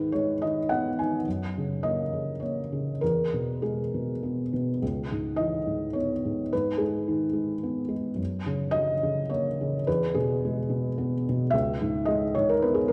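Melancholic and reflective, this neoclassical minimalist piano piece unfolds in a gentle 3/4 with a freely breathing rubato feel. A felt-muted upright piano plays alone for the full 12.9 seconds, spanning from deep bass notes up into the upper middle register. Its tone is soft, dark and mellow, with thick felt dulling each note, a short sustain, and the natural clatter of the action audible close up, giving the playing an intimate, up-front presence. The harmony cycles through G#m, F#, E and C#m7, and the phrase is stated once and then again beginning at 4.8 seconds. The piano sits inside a resonant recital-hall reverb with a 1.6-second decay, lending the hushed instrument a spacious halo. Tuned slightly high at A4 = 443 Hz, this is a brief fragment lifted from a longer work.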